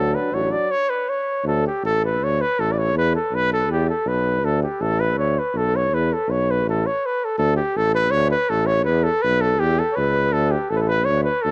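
Balkan folk brass band music at a brisk 162 BPM in 2/4, festive and wild, with a dark, soft-attacked trumpet carrying the melody up front over a roomy tuba bass, while a clear euphonium and a mellow second euphonium, both distant and with a cassette-tape tint, sound only in the opening 0.7 seconds of this short cut from a longer piece, all in a small, lightly reverberant home-recorded space.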